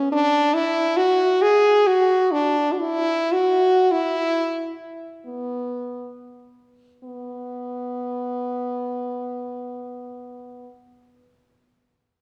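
The recording places a solo French horn on a scoring stage with a generous, wet reverb, the listener heard from further back in the room while the horn itself still sits present and up front. This is a brief cut from a longer classical piece, a free and expressive meditation in B dorian in 3/4, with a meditative, yearning mood. The tempo is rubato and shifts between 28 and 72 BPM, and the opening passage slows down across its first 7.0 seconds before a second section begins. The warm-toned horn plays alone throughout its 10.7 seconds, moving within a compact range from B3 to G#4. What stands out is the intimacy of a single unaccompanied voice set against a long, resonant room, so that each phrase lingers in the space.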